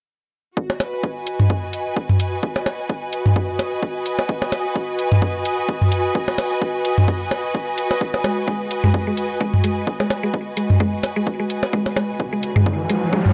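Sparse and hypnotic, this short minimal techno excerpt from a longer piece rides a swung 4/4 groove over a single G#m7 chord. A punchy, tape-touched electronic kick with a high-pass filter sits up front alongside overdriven, metallic hi-hats and electronic percussion blips and toms, all entering within the first second. Also up front, a clear, close studio string section plays lush bowed lines with vibrato, pumping against the sidechain. Further back, a bubbling sawtooth texture with resonant, random filter steps holds a sustained D#5, softened by chorus and its own reverb. At 8.2 seconds, a woody, round mallet-like FM pluck adds a percussive riff on G#3, colored by analog chorus and tape echo, before a riser enters at 12.3 seconds to close the excerpt. The whole recording has a dry, gritty hardware sound with light reverb.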